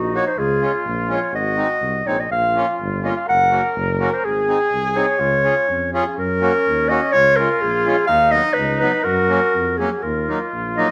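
A moderate studio reverb gives this short cut from a longer piece the feel of a band playing live together in one room. It is festive, jolly alpine folk in a dance-band style, set in 2/4 but with a loose, rubato feel. A warm clarinet carries the melody up front in a classical manner, while a dark trumpet with light vibrato and a smooth top plays a second line alongside it. A reedy single-reed accordion with dry tuning fills in a clear accompaniment, and a mellow tuba with a soft attack anchors the bass. After 6.2 s the opening section gives way to a second section, and the harmony settles into a new tonal centre. All four parts play together through the whole passage.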